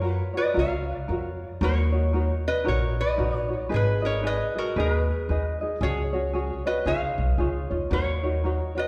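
Sunny and languid, this short Hawaiian excerpt swings gently at 114 BPM in 4/4, with a lap resonator guitar carrying the melody in a metallic, nasal slide voice, played with fingerpicks and touched by tape echo. A light, thumb-plucked tenor ukulele supplies the accompaniment, while a woody, thumpy pizzicato upright bass on steel strings holds down the low end until 8.6 seconds. The three up-front instruments sit in a wet recital hall heard from further back in the room, moving through chords from F#maj7 to D#m7.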